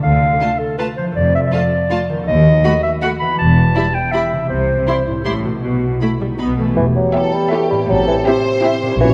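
A lilting three-beat pulse with a straight feel carries this playful, whimsical film cue, cut from a longer piece, with a sneaky, magical air. Up front, a soft-attacked clarinet sings a second line until 6.4 seconds, while a fingerpicked concert harp rings out arpeggios in the background. Bowed cello and double bass sections hold the low end with smooth, even vibrato. A distant violin section carries the melody over a closer second violin line, and the viola section adds expressive accompaniment with portamento. At 6.8 seconds a new section begins as a mellow bassoon with light vibrato steps forward beside a tight French horn section holding sustained chords, all set in a roomy scoring-stage reverb with a dark, warm production.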